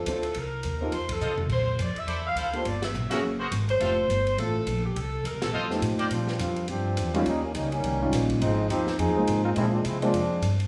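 A fast 4/4 swing at 208 BPM drives this energetic big band jazz excerpt, with a swinging drum kit, its snare high-tuned and kick punchy, riding alongside a woody pizzicato upright bass and a grand piano of long sustain. A mellow, smooth-topped saxophone section carries the melody until 5.8 seconds while a brilliant, vintage-toned trumpet section punches in tight stabs, and band accents land at 1.1, 2.8 and 5.4 seconds over changes moving from Cm7 and F7 through Bbmaj9#11 and Gbadd9. At 6.1 seconds the trombone section takes a bright solo line with light vibrato over Bb69, Eb7 and Ab6, all set in a moderate, large studio room.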